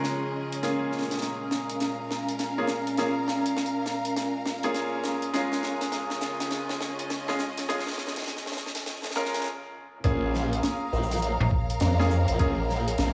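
Funky and swaggering, this glitch hop excerpt moves at 102 BPM in 4/4 with a swung sixteenth-note feel in B-flat minor pentatonic. A warbling, lo-fi pad holds sustained chords under a lush bowed string section, both pumping against the beat. Bright grand piano stabs sit up front with dub echo and a filtered sweep, while a dry, tight funk kit of hi-hat, shaker and high-tuned snare plays a fill through the build-up, set in a lush hall reverb with small room ambience. After a brief stop at 9.5 seconds, the drop lands at 10.0 seconds with a gritty, thumpy electronic kick and a detuned, wobbling formant-sweep bass carrying chorus. At 11.4 seconds a snappy FM bass with a metallic attack adds a quick hit.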